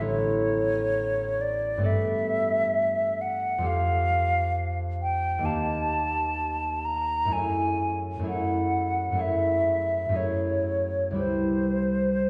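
Classical impressionist music for flute and harp, hazy and mysterious at a slow, rubato 65 BPM, in which a pure, hollow concert flute sings the melody with vibrato and tongued notes over fingerpicked, ringing harp chords drifting from Aadd9 through Gadd9, Fadd9 and D#add9 to F#m9 and Cmaj7, both instruments up front yet heard from further back in a wet recital hall, in a 12.3-second excerpt cut from a longer piece.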